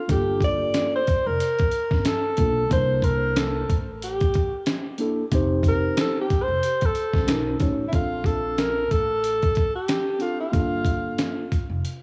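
A breathy alto saxophone opens this nocturnal, cool jazz-hop piece at 92 BPM with a swung-sixteenth 4/4 feel, playing an up-front subtone solo with light vibrato and scooped notes, coloured by cassette tape and tape echo, over a mellow, clean tine electric piano moving through Gm9, C13 and Fsus2, joined at 0.1 s by a dark, woody pizzicato upright bass on gut strings and a gritty, compressed sampler-style drum kit with a thumpy kick and fat snare, re-recorded in a large room and given its own cassette grit, before the solo gives way at 7.9 s to a second section on Bbmaj7 and Gm9, the whole set in light reverb with the character of a home cassette recording.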